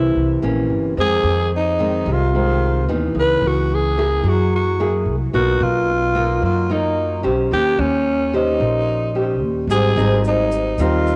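A growling alto saxophone leads this sunny, sophisticated bossa nova in Ab major at 110 BPM, its raspy, close-miked solo line full of vibrato and jazz phrasing, with a cassette-tape coloring on its tone. A fingerpicked nylon-string guitar with fresh strings accompanies in a bright, classical manner, also carrying that tape character, while a woody, thumpy upright bass played pizzicato sits up front beneath them. The harmony moves through rich extended chords, from C7b9 and Fm7 through Dbm9, Gb9 and Bmaj9#11 before settling on Eb6 and Abmaj7. At 9.7 seconds a grainy egg shaker slips in quietly in the background. Moderate spring reverb and the homespun cassette recording give this short excerpt from a longer piece an intimate, slightly worn feel.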